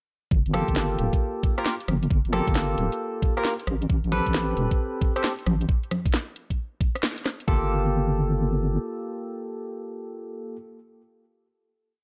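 A deep, soft wobble bass and a knocking two-step kick open this moody, bouncy UK garage piece at 0.3 s, moving at 134 BPM with a 65% swing in G minor, the bass playing a syncopated riff with a chorus sheen. A garage kit adds a cracking snare, metallic hats, rim clicks and high congas in a skipping swung pattern, while a barky tine electric piano places sparse, echoing chord stabs through lush chorus and tape echo, one shape moved in parallel from Gm9 to Am9 and back. After a band accent at 7.0 s, the drums drop away, the bass lingers until 8.8 s, and the piano sounds a final Gm9 chord that rings until 10.6 s in a digital ambience.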